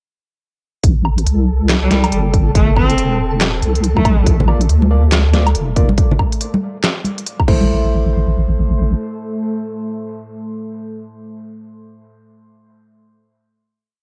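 A swung, half-time dubstep beat drives this brooding, meditative piece, with a punchy, up-front electronic kick and a tape-softened kit of snare, handclaps, crisp closed hi-hat, low woodblock and crash, while a deep, soft wobble bass with chorus shifts its wobble speed beneath. A clear, earthy cello with light vibrato plays short bowed phrases through dub echo from 1.8 seconds, over a faint flickering, grainy texture holding a high note, and bright, damped congas and a hollow, nasal organ stab playing off-beat chords join around 4.5 seconds. The drums stop near 7.6 seconds as a warbling, moody ambient pad drone carries the stab through the final hit, the whole mix bearing a home-cassette character.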